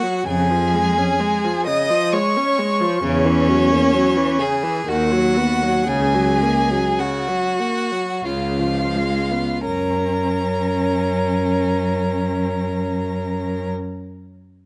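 Close, detailed microphones and a light reverb give this recording an intimate presence. It is a tender, serene slow romantic movement for string quartet in F# major, in 3/4 at 40 to 67 BPM, with a rubato feel and tuning at A4 = 438 Hz, cut from a longer piece. Up front, a single first violin carries the melody with a clear, smooth, even vibrato tone, while a second violin adds a rich second line beneath it. The viola supplies a focused bowed accompaniment, and the cello, placed close and forward, enters at 0.3 seconds with a clear, focused bass. The tempo gradually slows from 1.7 seconds, and at 9.7 seconds the harmony arrives on F#, opening a new section that carries the calm, unhurried mood to the end.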